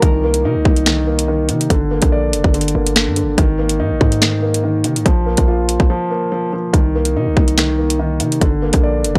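A dark, mellow grand piano anchors this menacing drill cut in C minor at 143 BPM with a half-time feel, its intimate, vintage tone carrying audible action noise up front over a Cm7, Gm, Absus2 and Bb5 progression. A drill drum kit with a hard-clipped kick, sharp snare, metallic hats and finger snaps sits up front beside a punchy, heavy 808-style bass whose sine body carries a noise layer and a fast attack. A brief break from 5.9 to 6.7 seconds interrupts the ominous groove, and the dry, gritty cassette-tape sound adds a hardware edge to this fragment of a longer piece.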